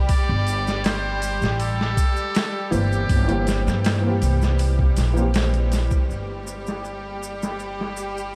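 A woody upright piano with tremolo and tape echo, a clear, bowed chamber violin section holding sustained chords, and an up-front pizzicato upright bass with tube saturation open this melancholic, hypnotic trip hop excerpt at 80 BPM. They are joined at once by a gritty, pitched-down boom bap drum kit with a thumpy kick and low-pass filtered hats, kick and snare, plus a faint tube shaker. A brilliant, buzzy trumpet with a metal mute carries a jazz-style melody through tape echo until 3.8 s over chords moving from Gmadd9 to C7/G, and the piano stops at 6.1 s as the harmony falls away, all set in a dreamy mix soaked in huge ambient reverb and vinyl crackle.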